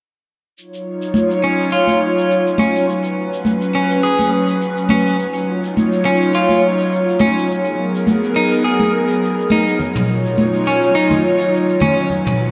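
A breathy, detuned pad with a warbling chorus anchors this wistful sunset chillout excerpt, holding sustained chords over distant, brushed shaker and toms under a filter sweep, small-room congas, and a slightly broken-up electric guitar picking compressed arpeggios through vintage 12-bit sampler grit and tape echo, all soaked in a dreamy cathedral reverb.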